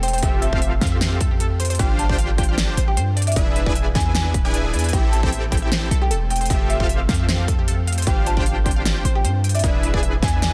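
A lightly swung, half-time 4/4 groove at 153 BPM drives this emotional, bittersweet future bass excerpt, with a punchy electronic kick and a big-room kit's huge snare and crisp hats under a deep, boomy 808-style bass, all pumping with sidechain except the drums. A detuned supersaw stab riff enters at 0.2 s, while a woody marimba melody and a lush unison pluck playing arpeggios sit in the background with delay, over a very quiet, shimmering ambient pad. The chords cycle through Fmaj9, G7sus4, E7 and Am7 in a dry, dense, heavily limited modern mix.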